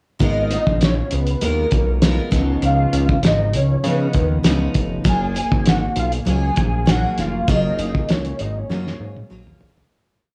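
A dry, gritty recording with light reverb frames this wistful, lonely bedroom-pop verse: a muffled, cloth-damped, thuddy drum kit with a fat snare and a thick, detuned sawtooth analog bass with tube saturation sit up front beneath a picked steel-string acoustic guitar voicing jazz chord shapes through lush chorus and warbly pitch drift, while a nostalgic, vibrato-laden lead carries a dark, motif-based melody until the piece fades out from 7.5 seconds and closes on a drum fill at 8.7 seconds.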